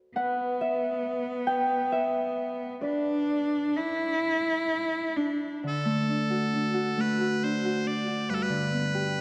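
Nostalgic and tender, this Celtic slow air in D major drifts in 6/8 at about 44 BPM, with uneven, rubato beats. A thumb-plucked Celtic harp rings from 0.2 s alongside a smooth, clear bowed cello with vibrato as a second line. At 5.7 s piercing, bright bagpipes take the melody up front over the harp as the chords settle on D, then G. The dark production sits in a wet church reverb.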